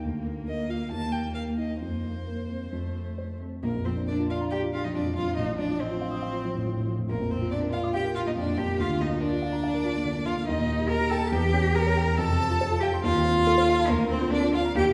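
Heard from further back in a recital hall with a wet, lingering reverb, this graceful, cheerful excerpt from a quick classical-period movement for piano trio moves in 4/4 with a rubato feel. A dark, mellow concert grand with deep bass and a short, vintage sustain sits up front in accompaniment beside a rich, expressive cello that carries the second line with vibrato, soft attacks and portamento. From 0.5 s a smooth, even violin with vibrato sings the melody, set noticeably quieter than the other two.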